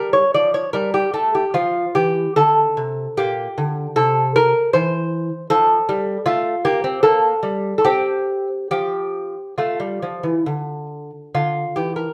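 In a stately triple metre that breathes with free rubato between 66 and 79 BPM, this baroque-style classical dance unfolds in F major with a grave, solemn air. A lone lute carries the whole passage from 0.0 to 12.1 seconds, fingerpicked in a delicate manner across a range from Bb2 to D5. Its gut strings and doubled courses give the tone a soft, mellow body, and some octave-doubled strings add a faint shimmer. The harmony moves from F through Gm/Bb and C, returns to F and F/A, touches Gm/Bb again, pauses on an unharmonized moment near 7.9 seconds, and settles onto Dm. The instrument sits up front, while a wet studio reverb with a short decay places the listener further back in the room, in this fragment cut from a longer piece.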